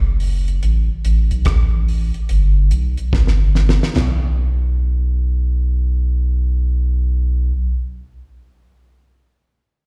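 Hypnotic and serious, this swung roots reggae fragment at 72 BPM rests on a deep, round, sine-toned sub bass that sits up front from 0.0 to 7.5 seconds, while a dry, damped 70s acoustic kit with a fat snare, tight kick, rim clicks, hi-hat, toms and dark china cymbal plays from 0.2 to 4.2 seconds, closing with a drum fill from 3.1 seconds, all heard as a live gig through the venue's PA in a recital hall.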